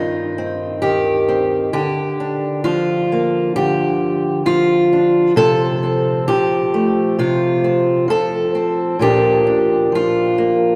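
A fingerpicked steel-string acoustic guitar plays alone from the first moment, a melancholic, intimate folk piece at 66 BPM in a straight 4/4, moving through Cm, Bb/D, F/C and arriving on Bb at 9.0 seconds. The guitar sits up front with a warm, concert tone, finger squeak audible as it spans G2 to A4. A wet church reverb with a 3.4-second decay surrounds it, giving the short excerpt the air of a large hall.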